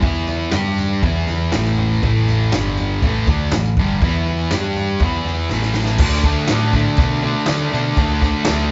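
Garage rock from a small band, this short excerpt drives along at 121 BPM in a straight 4/4 with a rowdy, raw mood. A bright, double-tracked fuzz guitar sits up front playing a distorted, picked riff built on power chords moving among E5, G5 and A5, before shifting to D5 at 6.0 seconds as a new section begins. A fingered electric bass, amped and punchy with overdrive, holds down the low end beneath it, while a vintage acoustic drum kit with dark cymbals, a medium-tuned snare and a punchy kick uses crash and toms, rolling through a fill from 5.5 to 6.0 seconds. A jingly tambourine sits very quietly in the background. The band sounds like it is playing live in one room, with a moderate large-studio reverb and a rolled-off top end that keeps the whole performance rough.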